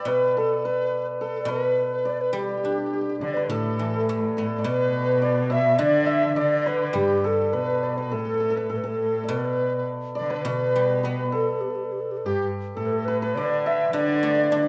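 Flowing rubato in a loose two-beat metre carries this festive, graceful Chinese traditional passage, where an airy, hollow xiao leads the melody over a shimmering hammered dulcimer, a pure large dizi with a buzzing membrane and vibrato, and silvery fingerpicked guzheng accompaniment, joined at 3.2 seconds by a distant, woody bowed cello, the ensemble heard in a moderate recital hall reverb.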